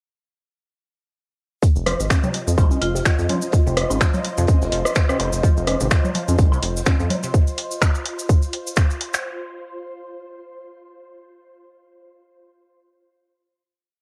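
Sparse and quirky, this short minimal techno piece runs at 126 BPM in 4/4 with a light swing on the sixteenths, dropping straight into its groove at 1.6 seconds. A tight, tape-treated electronic kick holds a four-on-the-floor pulse up front alongside a programmed garage kit of finger snaps and bright hats, while a very quiet open jazz kit adds a dark, looped breakbeat with edits, and a grainy, band-limited cabasa plays hand-played sixteenths. Electronic rim clicks, congas and woodblock, tape-warm and given analog delay, scatter clicks and blips in cross rhythm. Underneath, a rubbery, hollow square bass with tube saturation and sidechain pumping rolls through a staccato groove between F1 and F2, as a juicy, squelchy blip pluck with phaser and analog delay repeats a 6-step loop that drifts against the bar. An ethereal pad with ensemble chorus and reverb slowly shifts its chords from 1.9 seconds, a pulsing gated texture holds a high Eb5, and a marimba with hard mallets offers a brief answering phrase on F4 around 2.8 seconds. 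The whole thing carries the light reverb of a home cassette recording.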